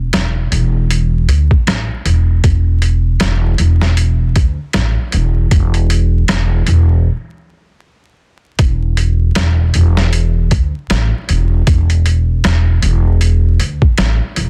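An upright bass opens the excerpt at 0.0 seconds, plucked pizzicato with a woody, growly tone roughened by tube saturation and sitting up front in the mix. A sampler-style boom bap kit joins almost at once with hi-hat, a thumpy kick and a medium-tuned snare; its sound is compressed, pitched down, gritty and tape-tinged, and it is also placed up front. This is smoky, cinematic trip hop at 78 BPM in 4/4, with a swung sixteenth-note feel and tuning set slightly below standard at A4 = 438 Hz. A stop interrupts the groove from 7.1 to 8.6 seconds, and a new section begins at 8.6 seconds and runs to the cut-off. The sound is dry and close, with a dense, heavily limited modern master and vinyl crackle adding a dusty surface.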